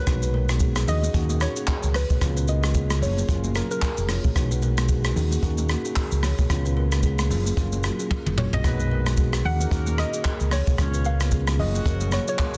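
A swung 16th-note groove at 112 BPM in 4/4 drives this joyful, sunny afrobeats piece in F# major. An up-front brushed kit with a boomy kick, handclaps, rim click, shaker, toms and a softly clipped snare sits beside a round, amped fingered bass, while very quiet, high-tuned congas ring beneath. A mellow tine electric piano and a breathy, detuned pad hold a looping B6–D#m7–C#7–F#maj7 progression, and a woody kalimba riff with delay sounds in the background. A soft, dark synth pluck with chorus, phaser and delay carries the melody from 0.0 to 4.1 seconds and returns at 8.4, and after a drum fill a distant horn section with light vibrato adds an octave-doubled second line from 8.6 seconds, set in studio reverb under a dense, heavily limited modern master.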